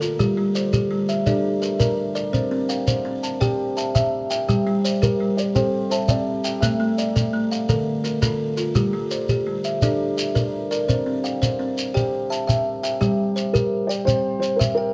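Southern African traditional music in a trance-like, hypnotic mbira-style interlocking cycle at 112 BPM in 12/8 and G dorian, it layers two kalimbas' ringing arpeggios, one woody and up front and the other bright, buzzing and airy until 13.2 seconds, over a grainy, mellow shekere, while a felt-muted upright piano adds a soft, boxy, dark melody with audible action noise at 5.0 seconds and again from 13.5 seconds, all in light reverb captured by close, detailed microphones.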